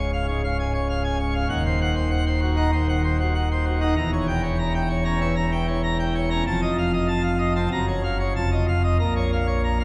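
A church or concert hall acoustic surrounds the music, with a wet reverb whose 3.1-second tail lingers in the space. This short passage is cut from a longer organ toccata, and its mood is dramatic and majestic. A solo pipe organ on full plenum, its mixtures drawn, sits up front with a brilliant, baroque-voiced sound spanning Db1 to Bb5. The music moves at 97 BPM in a straight 4/4, tuned to A4 = 441 Hz. The harmony opens on Db, darkens through Cdim/Eb and Edim7, builds tension on F7, passes through Gbmaj7 and F7 again, and settles on Bbm at 9.0 seconds before the clip ends at 9.8 seconds.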